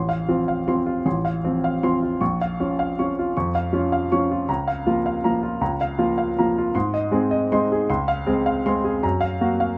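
A clear baby grand piano opens on an F/A chord, setting a wistful, elegant tone for this classical waltz in Bb minor. Moving in 3/4 at 157 BPM with a rubato feel, the piano plays solo across a range from A1 up to Db6. The harmony settles on Bbm at 2.2 seconds, then passes through Bbm/Db and Ab before turning to Dbmaj7 at 7.9 seconds and Gbmaj7 at 9.0 seconds. The instrument's tone is natural, with a short sustain, and it sits up front in close, detailed microphones wrapped in light reverb. The passage, cut from a longer piece, lasts just under ten seconds.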